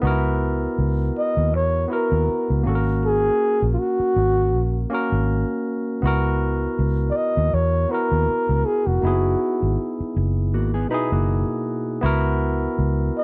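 A lightly swung 16th-note feel at 80 BPM carries this late-night, soulful R&B piece in C# dorian, where a round, punchy muted electric bass and a barky, lightly overdriven tine electric piano support a breathy, whispered flugelhorn melody with vibrato, scooped notes and slapback echo from 1.2 seconds, while a mellow, clean electric guitar adds a brief second line with warbly pitch drift from 10.5 to 12.0 seconds, set in a dry, close 1970s-style studio sound with light reverb.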